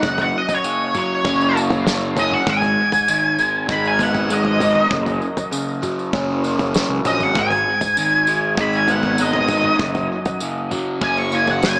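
An octave-fuzz lead guitar takes a dark, distorted solo from the very start, its wah and dub echo smearing the melody between C#5 and C#6 over a trippy psychedelic rock groove at 98 BPM, swaying between F# and G#m. Beneath it, a bright, double-tracked crunchy rhythm guitar plays a phaser-tinged riff, a round, punchy fuzz bass holds the low end, and a damped 70s kit with tight kick and rolled-off top keeps a straight 4/4 pulse. A jingly tambourine with dub echo sits in the background of this echo-heavy, small-speaker-sounding mix, cut from a longer piece at 11.8 seconds.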